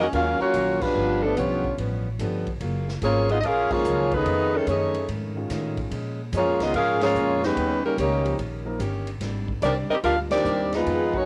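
Sultry and dramatic, this swinging big band jazz fragment puts a clear, up-front saxophone section on the melody over a bright trombone second line, with a very quiet concert grand piano, a woody, thumpy pizzicato upright bass, a boxy picked steel-string acoustic guitar and a distant, roomy drum kit with a boomy kick, while the band hits accents at 0.8, 3.6, 6.9 and 10.2 seconds, and the trombones, guitar and drums carry a cassette-tape colour within a lightly reverberant home cassette recording.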